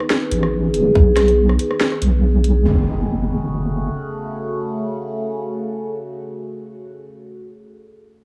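Deep dubstep at 141 BPM in F# dorian, brooding and meditative, moving with a half-time feel and a light swing on the sixteenths in this short fragment of a longer piece. An overtone-sweeping drone holds sustained chords throughout, its resonant sawtooth-and-sine tone shifting in its overtones, slow to bloom and long to fade, coloured by chorus, reverb and phaser. A garage drum kit of hi-hat, rim click and cracking snare plays up front with overdrive until 2.5 seconds, joined by a single tight, overdriven electronic kick at 1.0 seconds. Beneath them a deep, soft wobble bass built from detuned square and sine waves sits dark and compressed with chorus, holding the low end until 3.9 seconds. The harmony moves from B to F#m as an electronic impact arrives at 2.7 seconds and rings out in a moderate spring reverb with digital ambience.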